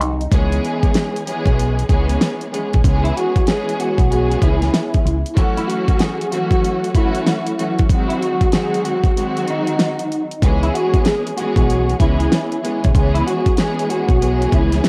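An up-front pop drum kit leads this reflective, dark boom-bap hip-hop excerpt at 95 BPM in 4/4 and C# minor, with a 63% swing on the 16ths; its layered electronic sound pairs a knocking kick and fat snare with bright hats. A lush bowed string section sits close behind, smooth on top and expressive with vibrato, carrying the accompaniment through a C#m7, F#m7 and G#7 progression. Over it, a picked, compressed electric guitar at the edge of break-up plays the melody in a narrow middle range, its slightly broken-up tone softened by ensemble chorus and filtering. A deep dub fingered electric bass, round, punchy and thickened with tube saturation, drops out at 5.2 seconds, and a short break starting at 9.2 seconds leads to its return at 10.4 seconds as the section repeats. The strings and guitar carry a cassette tape coloring, and the whole piece sits in a digital ambience with a home-cassette haze and vinyl crackle.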